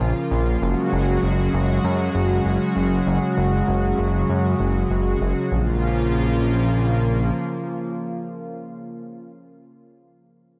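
Nocturnal and driving, this brief synthwave excerpt in Bb minor moves at 98 BPM in a straight 4/4, with a lush, detuned unison pad sustaining chorused chords through 8.7 seconds over a fat, nasal, tube-saturated analog bass with a plucky filter attack that drops out at 7.3 seconds, all soaked in a dreamy plate reverb as the harmony shifts from Bbm to Gbsus2 and returns to Bbm at 5.5 seconds.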